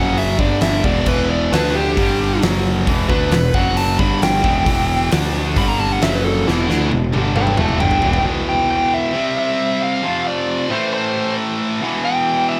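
An aggressive, driving hard rock excerpt in E minor at 134 BPM opens on a dark, overdriven lead guitar solo playing over a bright, double-tracked high-gain riff guitar, a growling, round bass and a huge arena drum kit with a fat snare and punchy kick that comes in at 0.2 seconds. A drum fill from 6.5 seconds leads to 8.2 seconds, where the bass and drums stop. From 8.3 seconds the two guitars carry on alone through a C, F5, Am and Em progression in a small room ambience.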